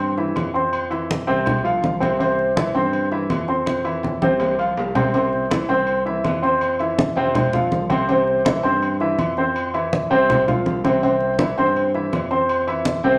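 A polished, up-front baby grand piano opens this festive salsa clip at 163 BPM, alternating C and F5 chords over a growly, bright fingered electric bass and close, dry congas played with hard hands on a low-tuned, thin skin. Ringing timbales and agogo bells with a vintage, band-limited sound join at 0.4 seconds, and a drum fill runs from 3.7 to 5.1 seconds before the joyful groove repeats. The recording sits in a wet, large studio reverb.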